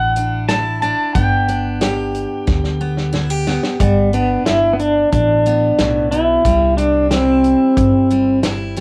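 A straight 4/4 pulse at 91 BPM carries this short, sunny cut from a longer honky-tonk and classic country piece in G major, tuned to A4 = 445 Hz, with a down-home feel. The pedal steel guitar sits up front with the melody, clean and compressed, played with fingerpicks and slide, its volume swells ranging from G3 to A5 until it drops out at 8.4 s. Beneath it, a bright, full-bodied dreadnought acoustic guitar is picked in accompaniment, while a woody, thumpy upright bass, plucked on steel strings, holds the low end between G1 and D2. A natural small-room drum kit with a punchy kick, a medium-tuned snare and hi-hat enters at 0.2 s, carries the grain of cassette tape, and plays a fill from 2.5 to 3.8 s before the phrase repeats. The harmony moves from Dadd9 to G and then to C at 6.5 s, and the whole take has the light reverb and homespun character of a cassette home recording.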